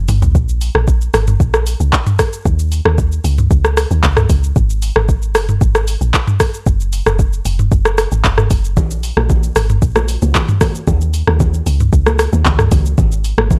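Amapiano at 114 BPM in a straight 4/4, this short cut from a longer piece has a hypnotic, late-night mood. A deep log drum bass sits up front from the very start, its round, percussive FM tone carrying a noise layer, a fast attack and a dark, decaying tail as it moves between F1 and Eb2. A smooth R&B drum kit opens with a brief fill in the first 0.3 seconds, then settles into an electronic, produced groove of soft kick, handclaps, rim click, shaker, toms and warm, tape-warm hi-hats placed close to the listener. At 8.8 seconds, bright, high-tuned congas join lower in the mix, their thin, damped skins struck with hard hands and carrying an acoustic, live-room quality. The overall sound is dry and gritty, with little reverb, giving the hardware recording an intimate, close feel.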